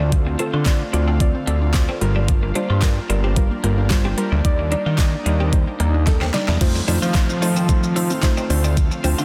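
This dance-pop cut opens at a confident 111 BPM in G minor, with a fat, detuned sawtooth bass pumping up front beneath a soft, round pluck, an airy, breathy pad and a very quiet, lush unison pluck tracing arpeggios, while a bright, twangy twelve-string electric guitar riff with analog chorus sits in the background. A layered electronic pop kit with a knocking kick, fat snare, crisp hats, shaker and handclaps drives the bittersweet Dm7–Gm7–Ebmaj7 progression, and a drum fill at 6.1 seconds leads into a new section on F7. There, a faint downlifter enters at 6.6 seconds, all under light digital ambience and a dense, heavily limited modern master.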